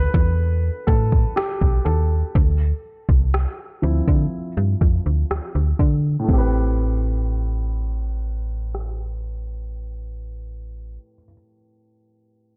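Moody, longing contemporary R&B, cut from a longer piece, moves slowly from E7sus4 through Dm7 to Am7 in a dark, low-passed digital ambience, with a filter sweep and a piano solo spanning the first 6.3 seconds. A dark, mellow baby grand with short sustain and audible action noise provides intimate accompaniment. Up front, a snappy FM bass with a metallic, decaying attack sits alongside a soft-kicked electronic drum kit of crash, kick and rim click, re-recorded in a large room; the drums stop at 9.0 seconds and the bass at 11.0 seconds, while the piano carries on until 12.6 seconds.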